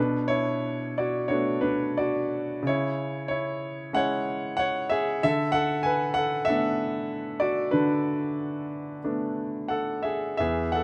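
Closely recorded with light reverb, a brilliant concert grand sits up front, its deep bass and natural tone captured in fine detail. This lyrical classical solo piano passage in B dorian moves at about 93 BPM in 4/4, its rubato giving the beats an uneven, breathing feel as the harmony passes from Bm7 to C#m at 2.6 seconds and on to Bm7/D at 5.2 seconds. The mood is cool and brooding, and the 10.8-second fragment is cut from a longer piece.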